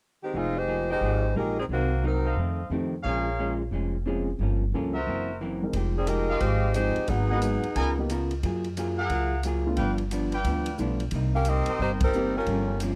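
Big band swing in F minor at 178 BPM, brassy and swinging, cut from a longer piece and captured close and dry in a small 1970s-style studio room. A bright, up-front saxophone section with light vibrato carries the melody in three short spans over a woody pizzicato upright bass, a clean, picked hollow-body jazz guitar and an intimate grand piano with audible action noise, while a distant, soft-edged trumpet section adds stabs from 0.9 seconds. The drum kit arrives at 5.7 seconds as the second section begins, bringing dark cymbals and a punchy kick, and the band hits an accent together at 12.0 seconds.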